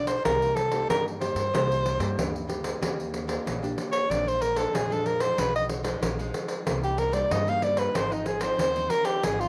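A homespun cassette sound frames this short excerpt from a longer piece, with a moderate spring reverb adding a modest room glow. In a joyful, playful blend of samba and choro, a breathy soprano saxophone carries the melody up front, its subtone, soft attacks, scooped notes and vibrato giving it a whispered, intimate jazz phrasing. Beneath it, a bright nylon-string guitar is fingerpicked in classical style, with the occasional finger squeak, while a woody pizzicato upright bass with transformer saturation anchors the low end. A jingly pandeiro played with hard hands joins at 0.1 seconds. From 2.8 seconds the saxophone takes a solo over a chord progression moving through Ebmaj7, Bb7, Abm6/Cb and Cm7 before settling on Ab6.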